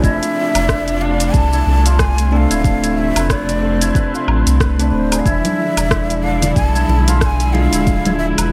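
A breathy, close-miked ney carries a meditative melody with vibrato and delay over a bell-like tine electric piano, shimmering hammered santur arpeggios and distant, dark bowed chamber strings, all moving from an F6 chord to E7b9 in this hypnotic organic downtempo cut at 92 BPM with a 16th-note swing. Underneath, a round, deep analog bass sits up front, pumping with the piano and strings against a deep electronic kick and a tape-toned deep house kit of metallic hats, rim click, shaker and woodblock. Hard-handed congas join in the background at 5.4 seconds, all inside light studio reverb.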